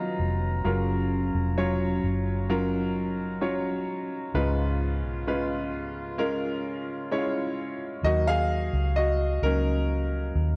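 A clear concert grand piano, a mellow brass section with light vibrato and a round, foam-muted electric bass open this heartbroken, longing pop ballad in Eb minor at 65 BPM, moving through Bmaj7, Gbmaj7 and Db7 chords. The soft-attack brass holds sustained chords in a tight classical style until 8.0 seconds, when the open-sounding piano takes a short solo over an Ebm chord while the punchy bass continues underneath. A lush hall reverb and worn cassette tape with warbly pitch drift give this excerpt a faded, nostalgic sound.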